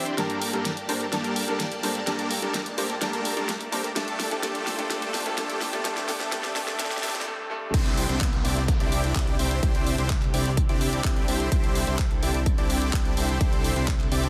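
Uplifting, euphoric festival progressive house at 127 BPM in C major, where a huge, airy supersaw lead riff with sidechain pumping, low-pass filter and dub echo rides over a fat analog bass, a lush, very quiet phaser-tinged supersaw pad, a very quiet riser and downlifter, an overdriven pop drum kit with fat snare, handclaps and crash cymbal, and a clear, vintage grand piano whose chords of Gmadd9 and F carry the build-up and drum fill until a brief break at 7.3 seconds gives way at 7.7 seconds to a drop on Cadd9 driven by a punchy, up-front electronic kick, all bathed in a moderate lush hall reverb within a dense, heavily limited modern master.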